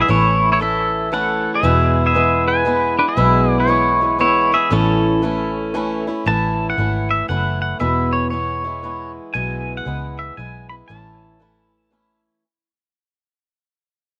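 A bright, twangy pedal steel guitar sings a heartfelt, nostalgic melody with fingerpicked slide lines and volume swells over a boxy, picked swing-style acoustic guitar, both up front with slapback echo, while a dark, round, foam-muted electric bass anchors this dry honky-tonk and classic country waltz in A major at 117 BPM with a swung 3/4 feel, moving between A and E before the excerpt fades out from 6.3 s.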